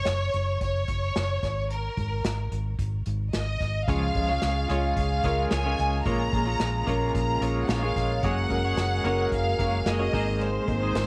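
A home cassette recording with light reverb and a small-room ambience gives this hopeful piano-driven pop excerpt a soft, vintage haze. At 110 BPM in a straight 4/4 and in Db major, it opens with a clear, close violin section carrying the melody with vibrato. From the start it is backed by a dark, foam-muted fingered electric bass that sits round and up front, and an airy acoustic drum kit played with bundle sticks, its punchy kick, medium-tuned snare and hi-hat adding a polished touch. At 3.9 seconds a present grand piano enters with accompaniment alongside a bright, twangy twelve-string electric guitar riff treated with tremolo and compression. From 4.6 seconds a very quiet, thick unison pad of detuned sawtooth and square waves, with chorus and phaser, adds slow-attack sustained chords underneath. The harmony moves from Gb5 through Absus2 into Db, Bbm7, Gbadd9 and Abadd9, and the violins, drums, piano and guitar all carry the cassette tape colouring.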